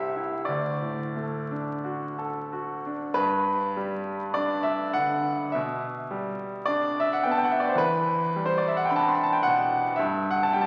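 Rubato and slow at 43-55 BPM in 4/4, this serene, tender romantic nocturne in G major, cut from a longer piece, features a solo grand piano that sounds clear, natural and up front across C2 to C6, moving from D toward G as a new section opens at 3.2 s and settling on Em/G by 10.0 s, all bathed in a lush concert-hall reverb and the crackle of a very old 78 rpm record.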